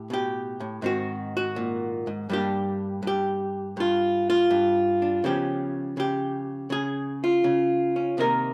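Swung eighth notes at an easy 82 BPM in 4/4 give this brief solo jazz passage a relaxed, lilting pulse, with the swing sitting at 69% on the eighths. A lone archtop guitar carries everything for the full 8.5 seconds, its clean, picked electric tone dark and hollow-bodied, heard both through the microphone and the amplifier and placed up front. The harmony moves through Gadd9/A, Ab7, a longer stretch of Gm7 from 2.3 seconds, and a Db7#11 at 5.2 seconds, lending the moment a sophisticated, warm color. The guitar ranges from G2 up to Bb4, spanning low voicings and the upper middle register. A moderate studio reverb with a 0.9-second decay gives the sound a sense of space, and the passage reads as a fragment cut from a longer piece.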